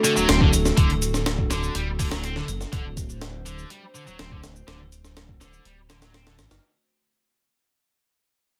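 A sampler-style breakbeat drum kit drives this swaggering, funky breakbeat excerpt, its compressed, gritty hits carrying a thumpy kick, a high-tuned snare and hi-hat, re-recorded in a small room and sitting up front at 123 BPM in a straight 4/4. An electronic, tape-warm shaker runs alongside the kit, while a scooped, high-gain electric guitar plays a bright, distorted, picked riff, double-tracked and roughened with vintage 12-bit sampler grit, a low-pass filter and digital delay until it stops at 6.3 seconds. From 0.2 seconds a deep, rumbling detuned saw bass enters, its dark, beating tone placed up front beneath the groove. A warbly, lo-fi pad holds nostalgic sustained chords over a D7 harmony, colored by chorus and its own reverb and pumping against the sidechain. Light reverb frames the mix as the whole short passage fades out across its length.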